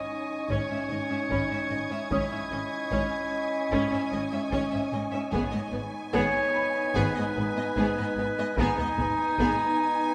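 A brief, uneasy excerpt of suspense film score in G# minor at 74 BPM opens with a smooth chamber violin section holding a high melody, a warm, up-front clarinet second line, mellow, roomy French horn chords, an airy wind-like noise layer with built-in reverb, and a second chamber violin group adding a higher texture for the opening seconds. From 0.5 s, a lush studio violin line, portamento-tinged violas in the background, clear cellos and close, expressive double basses on G# join a close and dry taiko ensemble struck with hard sticks, while a soft, felt-muted upright piano adds a very quiet high texture from 1.3 s. The ominous harmony moves from C#madd9 over G# to G# minor at 5.3 s, set in a wet scoring stage reverb.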